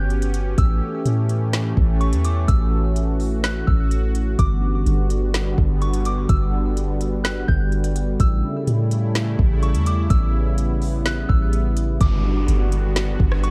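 A half-time groove from a tape-warm, smooth R&B drum kit enters at 0.1 s, with a soft kick, woody snare, rim clicks and smooth hi-hats sitting up front beside a deep, round 808-style bass. This floating, blissful cloud-rap fragment drifts between Gmaj7 and A7 under a sweeping, resonant sawtooth pad with detuned ring-modulated shimmer, chorus, sidechain pumping and a filter swell, while a delicate FM tine bell tinkles a high melody through chorus, low-pass filtering and delay. The dark, dry production closes with an electronic downlifter at 12.0 s.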